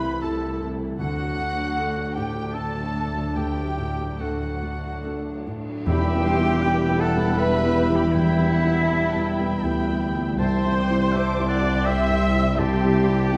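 In a rubato 3/4, this cinematic, emotional film score for orchestra unfolds with a bittersweet, sorrowful mood, cut from a longer piece. A muted violin section carries the melody, dark and veiled with vibrato, while a mellow oboe, a distant, pure silver flute and a second, more distant violin line weave supporting lines around it. Beneath them, a soft felt-muted upright piano and a lush viola section provide accompaniment, a tight French horn section holds mellow sustained chords, a very quiet concert harp rings out arpeggios, and muted cello and double bass sections anchor the bass. A very quiet cymbal swell and tam-tam enter at 3.4 s, and at 5.9 s the ensemble marks a band accent as round, soft-mallet timpani and a bright clarinet join, the clarinet adding another line through to the end. The whole is bathed in a wet scoring-stage reverb that lends a spacious glow.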